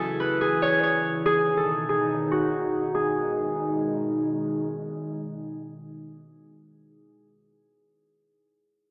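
A dreamy, reverb-soaked hall sound with a small-speaker feel frames this dark, cold half-time hip hop excerpt at 142 BPM in G# phrygian, where a ringing, fingerpicked Celtic harp carries the melody through a low-pass filter and diffuse ambient delay until 5.2 seconds, over an airy, breathy pad of detuned sustained chords treated with chorus and phaser that holds until 6.9 seconds, as a filter sweep opens the first 2.9 seconds and the harmony moves from C#m to G#m.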